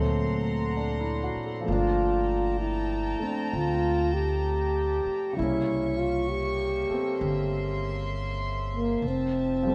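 This jazz ballad moves at a slow 65 BPM in 4/4 with a swung eighth-note feel, carrying a tender, late-night mood through a brief section cut from a longer piece. A breathy trombone carries the melody, its soft attack, light vibrato and whispered tone placed at a distance in the room. Beneath it, a concert grand piano supplies intimate accompaniment with deep bass, long sustain and audible action noise. A chamber string section holds sustained bowed chords with a reedy, gut-string period character. Meanwhile a woody, dark pizzicato upright bass sits up front. The harmony passes from D7b13 to Gm9 and C7b9 before settling on Fmaj7 at 9.0 seconds, all within a moderate amount of large studio reverb.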